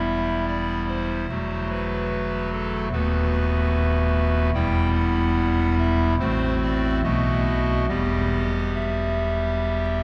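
A hollow clarinet reed stop on pipe organ, with a baroque voicing and audible chiff, plays a solemn, dark classical chorale alone at 73 BPM in E minor, sitting up front across a range from D#1 to G5 as its harmony moves from Em through Am69/E, B7/D# and F#dim/A to B7 before settling back on Em at 7.9 seconds, all wrapped in a wet cathedral reverb with a shadowy production and vinyl crackle in this ten-second cut from a longer piece.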